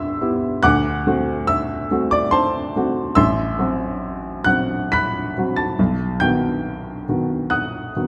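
Bittersweet and brooding, this fragment of a romantic character piece for solo piano unfolds in a flexible, rubato triple metre, its harmony drifting from Cmaj7 through D7 and F#m7b5/A before settling on B. The baby grand sits up front with a dark, mellow, intimate tone, its short sustain and audible action noise giving the playing a natural, close-up feel across a range from deep bass to high treble. A moderate recital hall reverb surrounds the instrument, adding space to the shadowy production.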